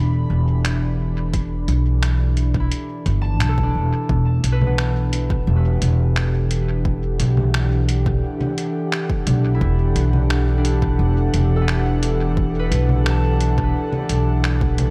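Spacious and deep, this ambient dub excerpt rests on an Em11 chord, with an airy, breathy pad holding sustained chords through a chorus effect, a ringing, fingerpicked concert harp spinning arpeggios into dub echo, and a woody, dark pizzicato upright bass up front, while a muffled, lo-fi sampler-style kit of congas, finger snaps and hi-hat enters at 0.6 seconds with its own dub echo and a punchy electronic kick joins at 1.3 seconds, all set in light reverb.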